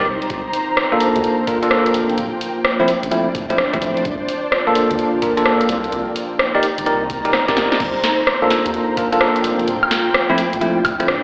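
A bell-like tine electric piano opens this bouncy, late-night two-step garage excerpt with up-front stabs through phaser and digital delay, over a dark, rumbling detuned saw bass and an ethereal, airy pad that shimmers with ensemble chorus, tremolo and sidechain pumping. From 0.2 seconds a punchy analog drum machine, re-recorded in a large room, adds crash, hi-hat, rim click, snare and woodblock on a swung groove, with a drum fill at 7.3 seconds, while a gritty, pitched-down electronic kick thumps in the background. Minor seventh chords circle beneath a lush hall reverb, and the whole mix carries the sound of AM radio played on a big sound system in a bare room.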